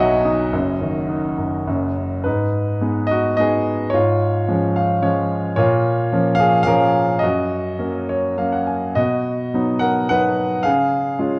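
Dark, moody production sets a smooth, vintage-toned grand piano up front in a moderate recital-hall reverb for this bittersweet classical solo excerpt in G# dorian, drifting at 107 BPM in 3/4 with uneven, rubato beats as the clear, long-sustaining piano spans F#1 to G#5, moves from a brief opening passage into a longer second section at 2.3 seconds, and adds fills at 4.5 and 7.8 seconds over chords that settle from G#m through A#m and F# to a close on C#.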